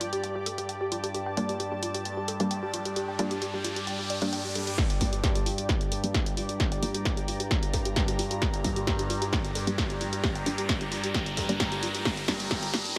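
Bathed in a lush hall reverb, this intense, industrial excerpt of driving peak-time techno at 132 BPM in G minor sets a dark, woody wave-folded pluck riff with sidechain pumping and tape echo over a resonant drone of moving overtones, a blurred granular cloud pad, muted dub chord stabs from 1.4 s, and dry, punchy analog hi-hat and snare, while an electronic riser enters at 2.5 s and a distorted kick drum lands up front at 4.8 s amid a build-up, drum fill and filter sweep.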